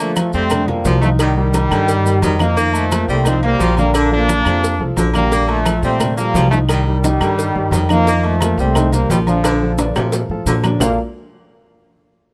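A bright, punchy trombone section opens this sunny, danceable salsa excerpt at 175 BPM in Bb major, carrying the melody up front over a distant, roomy baritone saxophone second line with vibrato and a dark, mellow grand piano in the background with audible action noise. Ringing low-tuned congas and metal-shelled agogo bells and timbales sit behind. At 0.2 s they are joined by woody claves, very quiet high-tuned cowbell and bongos, and grainy, saturated maracas, and a thumpy pizzicato upright bass enters up front at 0.3 s. The harmony moves between Bbmaj7, Cm7 and F7sus4, a drum fill arrives at 9.4 s, and the close, detailed sound carries little reverb.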